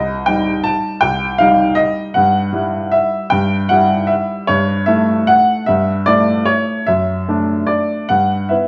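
Heard through worn, warbling old cassette tape with drifting pitch and a large studio's wet reverb, this sparkling, playful classical piano waltz in 3/4 sways with rubato between 139 and 166 BPM as a clear, woody upright piano with short sustain sits up front alone, its vintage tone moving from C minor through E minor, A7 and D chords across a short 8.7-second fragment cut from a longer piece.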